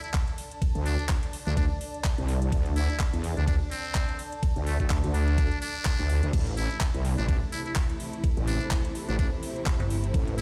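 Bouncy and gritty, this bass house excerpt sets a raspy, growling muted trumpet melody with delay over a knocking electronic kick, a swung garage kit of handclaps, crash, ride and metallic hats, a blurred granular cloud pad and a heavy, saturated wobble bass that enters at 0.8 seconds, with lush bowed strings joining at 6.3 seconds and a brief digital FM bass note sounding near the end, the mix carrying a large studio reverb.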